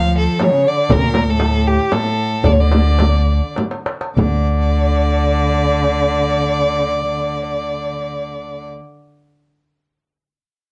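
In a straight 3/4 at 96-120 BPM, this short Arabic maqam ensemble piece in D maqam nahawand unfolds with a melancholic, longing mood, slowing down from 0.9 to 4.2 seconds. A single bowed violin carries the melody up front with a rich, focused tone and vibrato, while a bowed cello plays a second line beneath it, its sound nasal, smooth and somewhat boxy. An upright bass holds down the low end with woody, growly pizzicato on steel strings. From 0.4 to 4.5 seconds a close, warm frame drum and a crisp, high metal-shell darbuka played with soft hands in the background add percussion, capped by a drum fill from 3.6 to 4.2 seconds before the music moves into a new section. The whole recording sits in a small room with moderate reverb and carries the worn, warbling pitch drift of old cassette tape, and it is cut from a longer piece.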